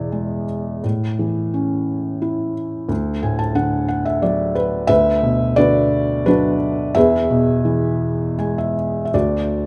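A moderate recital-hall reverb surrounds a single felt-muted upright piano, which sits up front with a soft, mellow, intimate tone and audible action noise from the instrument itself. This is lyrical classical solo piano in D lydian, relaxed and sunny in mood, moving in 3/4 at a rubato pace between 77 and 91 BPM. The piano spans the low D2 up to A5, its dark, vintage character giving the short passage a smooth, close feel. Harmony drifts from E to A, settles on D at 2.9 seconds, passes through Bm/D and back to E, and comes home to D near the end. Brief piano fills decorate the phrase, the first at 2.9 seconds and another at 8.0 seconds, in this fragment cut from a longer piece.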